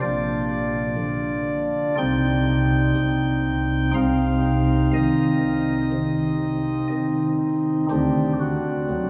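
A pipe organ on soft flute stops plays the excerpt alone, performing a slow, chorale-style passage in a dark, grave mood. The tempo sits around 61 BPM in 4/4, taken with a free, rubato feel. The voicing has a baroque character, and each note speaks with a gentle chiff, heard close and up front even as the sound spans from Bb1 up to G5. The harmony moves from Bb to C minor at 2.0 seconds and turns to D7 at 7.9 seconds, leaving the phrase unresolved as the clip ends at 9.1 seconds. A long, wet cathedral reverb with a hint of small-room ambience places the listener farther back in the space, giving the organ a solemn, lingering halo.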